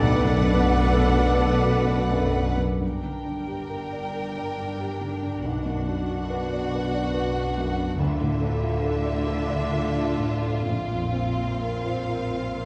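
Heard from further back in a wet scoring stage, this cinematic, emotional film score excerpt unfolds slowly in 6/8 at a rubato 42-48 BPM, its bittersweet, moving harmony drifting from Bm7 through Gm and Dmadd9 to a closing Bbsus2. Lush, focused violin sections carry the melody and a second line with vibrato, over a distant viola section, a smooth cello section and a double bass section in the low register, while a present baby grand piano adds accompaniment from deep bass to upper register. For the first 2.5 seconds a pure flute section, a clear close-miked oboe, a soft-attack clarinet and a very quiet, mellow French horn section colour the opening chord before the strings and piano continue alone to 12.7 seconds.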